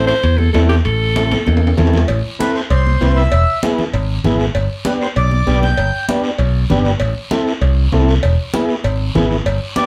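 A reedy, mid-forward accordion carries the solo from 2.4 s in this driving, fiery cumbia cut from a longer piece, after an edgy, punchy alto saxophone opens with a brief vibrato line and a drum fill leads into the new section, while an overdriven vintage combo organ with heavy vibrato, a bright, growly picked electric bass up front, a raspy, distant guiro, ringing metal-shell timbales and cowbell, and hard-handed, high-tuned congas fill a moderate studio ambience heard from further back in the room.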